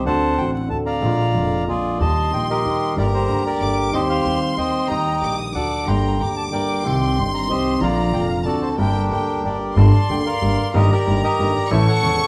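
A reedy, dark bandoneon carries the melody up front in this melancholic, dramatic tango fragment in G minor, moving in a rubato 3/4 at 186 BPM over a clear, long-sustaining grand piano and a woody, growly pizzicato upright bass. At 2.0 seconds a chamber violin section enters with a soft-attacked, sul tasto second line touched by light vibrato. The band sounds as though it is playing live in one room, bathed in wet large-studio reverb with a layer of vinyl crackle.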